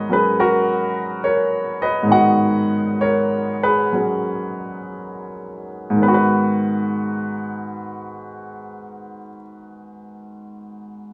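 Swung eighths in 4/4 drift between 54 and 74 BPM, easing to a slower pace over the first 6 seconds of this melancholic, intimate jazz ballad in G# minor, tuned to A4 = 442 Hz. A lone grand piano, warm, polished and up front, carries the whole cut-down passage across a range from G#2 to F#5, resting on G#m9 before shifting to G#m7 at 6.0 seconds. A moderate large-studio reverb gives a sense of space around the present, close piano tone.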